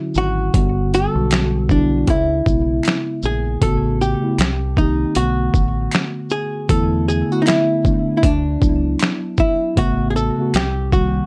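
Melancholic and reflective, this lo-fi hip hop excerpt with a swung feel sets a dark, clean archtop guitar melody with analog delay up front over mellow tine electric piano chords from Dmaj9 to Cm7, a round, deep dub fingered bass and a gritty, overdriven, pitched-down boom bap kit with a thumpy kick, while a very quiet, vintage finger snap joins at 1.3 seconds under light reverb.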